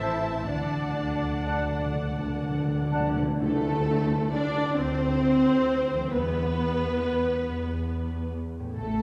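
In a rubato 6/8 at roughly 41-46 BPM counted in dotted quarters, this uplifting, hopeful film-score passage in D mixolydian sets a muted, con sordino violin section on a veiled melody, supported by a second muted violin line in the background, an up-front viola section, cellos, and double basses beneath a ringing, thumb-plucked concert harp arpeggio. For the first 3.1 seconds a hollow silver flute, a mellow clarinet and a distant, roomy oboe add quiet second lines, while a very quiet, dark French horn section holds chords until 1.9 seconds and hard-mallet calf-head timpani play a fill from 0.5 seconds. A band accent at 3.4 seconds opens the second section, where a close, very quiet tam-tam sounds until 7.0 seconds and the harmony moves from D to Em, all heard from further back in a scoring stage's reverberant space.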